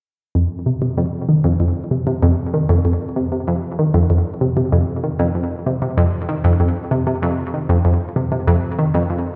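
Ambient excerpt with a mysterious, expansive mood, carried by a lone analog pluck heard from 0.4 to 9.2 seconds in a low register between F2 and Eb3. The synth sits up front, round and detuned, blending sawtooth and square waves with a noise layer, a filter sweep, a fast attack and short decay, and it is colored by chorus and delay. A wet echo chamber reverb gives the echo-heavy mix a deep, spacious tail.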